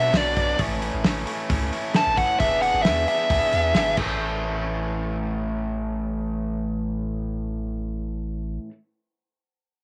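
A dark, distorted lead guitar with slapback echo carries a bluesy solo melody through the first 4.0 seconds of this wistful yet upbeat indie rock excerpt at 133 BPM in A major, moving over Bm, A and E7. Beneath it, a bright, crunchy overdriven guitar picks an up-front riff, and a deep, punchy sine sub bass with a pitch-drop attack holds the low end, while a loose, lo-fi drum kit with a fat snare, dark cymbals and a rolled-off top plays until 4.1 seconds. After the drums and lead stop, the riff continues until 8.7 seconds, with the bass beneath it until 8.6 seconds, in a small room with light reverb.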